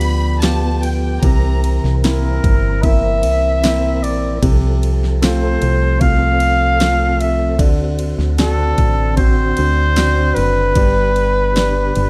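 This emotional, heartfelt pop ballad opens with a lush, bowed studio violin section playing over the full band only until 1.8 seconds, before a warm, roomy flugelhorn takes the solo melody at 2.0 seconds with soft-attack, jazz-style vibrato. A polished grand piano supplies the accompaniment, while a mellow, flute-like tonewheel organ holds sustained chords in the background through chorus vibrato and a fast rotary speaker. Underneath, a punchy, round FM bass and an up-front electronic R&B kit with a knocking kick, fat snare and ride cymbal ground the dark, warm production.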